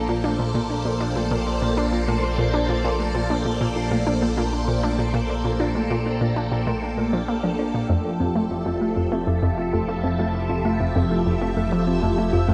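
A swirling, up-front phased string machine holds sustained chords over a fat analog bass in this cosmic, luminous excerpt of sequencer-driven ambient space music, as a round, echoing analog pluck riff and a mellow, tine-like thumb-piano-like synth pluck arpeggio in the background join at 0.1 seconds, all accompanied by a very quiet, bubbling stepped-filter texture in an echo-heavy plate-reverb space.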